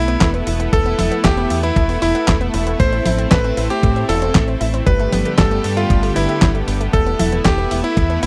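A straight 4/4 italo disco groove at 116 BPM runs through this short, nostalgic and danceable excerpt, driven by a thumpy, tape-warm electronic kick and an up-front 12-bit drum machine with a fat snare, handclaps, hi-hat and congas, all re-recorded in a small room. A round, envelope-filtered fingered electric bass with tube saturation sits forward in the mix, while a lush, warbling unison pad holds chorused chords and a nasal, detuned analog pluck ripples arpeggios in the background through chorus and tape echo. On top, a bright, cutting electric grand piano with a clangy low end carries the melody with tape echo over an Esus4, Am, Gadd9 progression, all in a dry, close 1970s-style studio sound.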